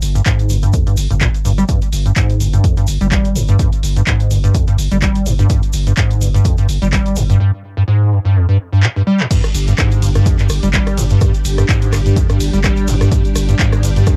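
Hypnotic and trippy, this acid house excerpt sets a squelchy, resonant square-wave acid riff with overdrive, chorus, sampler grit and sidechain pumping over a round, deep analog bass, a dry, punchy electronic kick, an analog drum machine of handclaps, hi-hat, ride, rim click and crash, and a grainy egg shaker in the background, until a drum fill leads into a drop at 9.3 seconds where a lush, bright string machine enters with sustained chords, all on a lightly reverberant home cassette recording.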